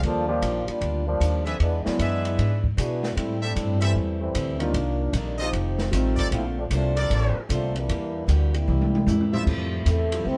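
A mellow, roomy trombone section carries a joyful, energetic big band swing passage at 152 BPM, over a woody, growly upright bass, a dark-cymballed jazz kit with a boomy kick, and a background of grand piano and picked acoustic guitar with audible finger squeak. Close-miked trumpet stabs with light vibrato cut in from 1.5 seconds, and a drum fill pushes the band toward a brief switch at 9.4 seconds, where soft-attack trombone chords settle underneath. A veiled, breathy cup-muted trombone melody steps up front at 9.9 seconds, all set in light reverb with the feel of a band playing live in one room.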